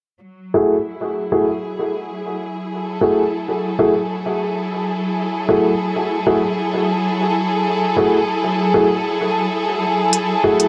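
This ambient dub excerpt is spacious and meditative, moving at 97 BPM in a straight 4/4 in F# minor, tuned slightly sharp to A4 = 441 Hz. A lush, bowed studio string section holds sustained chords that gradually fade in from 0.2 seconds, its smooth vibrato tone resting on a single F#m9 harmony. An upright piano plays short stabs, sounding woody and intimate with audible action noise, its tone darkened by a low-pass filter and repeated by dub echo. A crisp, tape-toned electronic hi-hat joins only at 10.1 seconds, just before the cut. Strings and piano sit up front within a huge ambient reverb whose long tail lingers for 4.6 seconds, giving the brief passage a floating, open feel.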